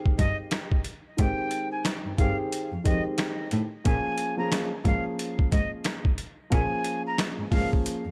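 Gritty, compressed sampler-style drums with a thumpy kick and a medium-tuned snare anchor this nostalgic, confident boom-bap hip-hop excerpt at 90 BPM in Ab major with a swung 16th-note feel, over a dark, woody upright piano tinted by cassette tape, a breathy, bright flute melody with analog delay from 0.2 seconds, and a rich, bowed cello bass with vibrato, set in a small room.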